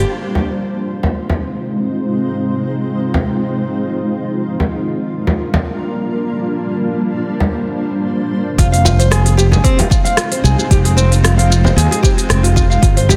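Hypnotic and mystical, this organic downtempo excerpt at 113 BPM in F dorian opens on a cloudy, blurred granular pad of sustained, sidechain-pumped chords, with a deep, up-front frame drum entering at 0.4 s; at 8.6 s a fingerpicked nylon-string guitar with audible finger squeak adds delayed arpeggios, a warm, up-front fretless electric bass pumps beneath, and a tape-warm electronic kick joins an organic electronic kit of crisp hi-hats, rim clicks and shaker, all inside a lush hall reverb and a dense, heavily limited master.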